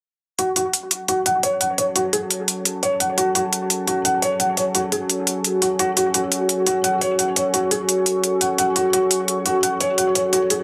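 A felt-muted upright piano, mellow and intimate with audible action noise, opens at 0.4 s alongside crisp, layered electronic hi-hats, its arpeggios on an F#madd9 chord run through a low-pass filter sweep and dub echo; a deep, detuned sawtooth analog pad with chorus arrives at 1.4 s, and a very quiet, warbling, lo-fi tape-like pad with ring modulation slips in at 1.6 s, giving this dark, aggressive fragment of technical drum and bass in F# minor at 172 BPM a dense, heavily limited finish under light reverb.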